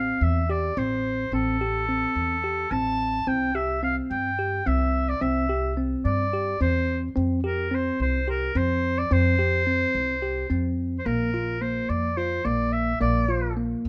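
Close, detailed microphones and light reverb frame this shimmering, restless fragment of contemporary chamber music in 7/8 at 216 BPM (eighths), where a roomy, classical-style solo oboe carries the melody over bright, bell-like tine electric piano arpeggios heard through built-in speakers and a woody, thumpy pizzicato upright bass on gut strings, moving from Am7 through C and Fsus2 before turning to Bb at 11.1 seconds.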